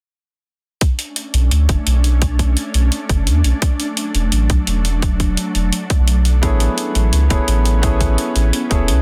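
A tight, overdriven kick and a gritty, compressed hi-hat open this melancholic, soulful liquid drum and bass excerpt. They are joined by an ethereal, warbling pad with chorus and reverb and then a deep, round sub bass sitting up front over Bm9, E9sus4 and Amaj7 chords, before an intimate, boxy grand piano with delay enters at 6.4 s.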